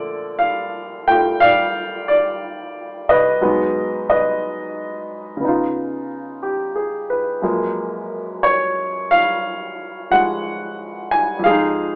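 A warm baby grand piano plays alone in this short solo jazz passage, its natural tone and short sustain keeping each chord crisp and close. The mood is playful and sophisticated, with a relaxed swing in the eighth notes over a steady four-beat pulse. The harmony moves from Bbmaj7 through Abm7 and Db9 to a lingering Gbmaj9 before settling on Fm7 near 11.4 seconds, with the piano ranging from F2 up to Ab5. Although the instrument sits up front in the mix, the overall sound is heard from further back in the room, with moderate studio reverb and an AM radio colour that gives it a vintage, broadcast quality. The 12-second clip is cut from a longer piece, so it begins and ends mid-thought.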